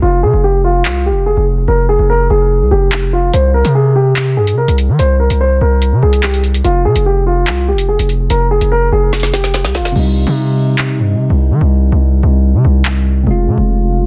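A dark, mellow grand piano carries an ominous drill melody through a low-pass filter and delay over a distorted, saturated 808 bass that hits heavy and up front, with a half-time drum kit of woody snare, metallic hi-hats, handclaps and crash joining at 0.9 seconds. After a drum fill, soft, round electric-piano-like synth keys with chorus and phaser replace the piano at 9.9 seconds, and the hi-hats fall silent from 10.0 seconds while the bass keeps its menace. The mix is dry, dense and heavily limited, and this piece is cut from a longer track.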